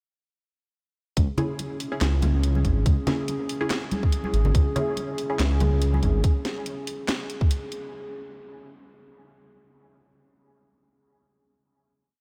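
Heavy and dark, this short deep dubstep piece in C# minor rides a half-time 142 BPM groove with a drop from 1.2 seconds, where a tight, up-front electronic kick and a garage kit of cracking snare, bright hats and handclaps join a deep, rumbling detuned saw bass and a moody, nasal analog pad droning under lush chorus until 8.0 seconds, while sparse muted chord stabs with phaser and dub echo and ringing congas echoing through the mix arrive at 1.4 seconds, all soaked in dreamy cathedral reverb.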